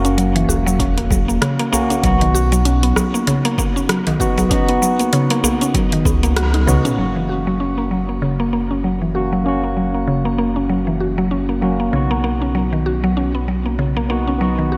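A swung groove in four opens this peaceful organic downtempo piece, with a filtered deep house kit of cabasa, hi-hat, rim click and toms and a tight, rattling djembe tucked in the background, joined at 0.8 seconds by a punchy layered electronic kick that drops out at 6.2 seconds, while the kit and djembe fall away after a drum fill from 6.4 to 7.0 seconds. Up front, a woody, round mallet-like synth pluck spins chorused arpeggios that take on a filter sweep in the second half, while a dark, smooth synth bass pumps beneath. A barky, clean tine electric piano adds bright, filtered chords through diffuse delay and shimmer reverb, and the whole dreamy mix is soaked in lush plate reverb.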